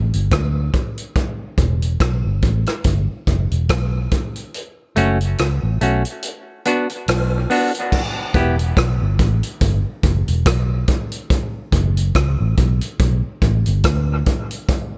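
A small, natural-sounding room holds this deep, heavy dub reggae excerpt in E dorian, moving at a relaxed 71 BPM with a swung sixteenth-note feel over a chord cycle of Em, F#m and Bm. A dark, round, foam-muted electric bass sits up front alongside an acoustic vintage drum kit with a punchy kick, crash cymbal, hi-hat and rim clicks; the track opens on a break, and the kick drops out between 4.5 and 7.9 seconds. A clean, hollow-body semi-hollow electric guitar enters briefly at 5.0 seconds, its picked accompaniment carried by tremolo and dub echo.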